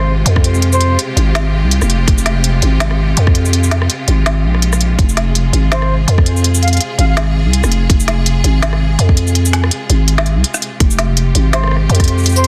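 Dark and spacious, this half-time drum and bass excerpt moves at 165 BPM in F minor with a swung sixteenth feel. A growling, buzzy 808-style bass and a hard-clipped electronic kick sit up front, while an organic electronic kit adds a woody snare with soft clipping, smooth hi-hats, rim clicks and shaker, and a clear, bowed string section holds sustained chords that pump under sidechain. A distant, pure-toned silver flute drifts in with brief phrases coloured by vintage 12-bit sampler grit and digital delay, first at 0.0 seconds and again at 5.7 and 11.5 seconds, all within a dense, heavily limited modern master.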